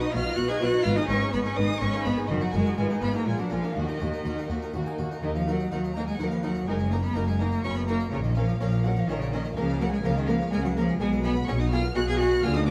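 In a straight, driving 3/4 at 125 BPM, this dramatic baroque-style concerto movement in Eb minor, cut from a longer piece, puts a clear, up-front solo cello with vibrato on the melody alongside a dark, woody violin section also carrying the tune, while a warm sul tasto violin section plays a second line, an airy harpsichord with two sets of strings and a background viola section supply the accompaniment, and a rich double bass section and an expressive, portamento-tinged cello section enter on the bass at 0.1 s, the whole ensemble heard in a moderate concert hall reverb beneath a layer of vinyl crackle.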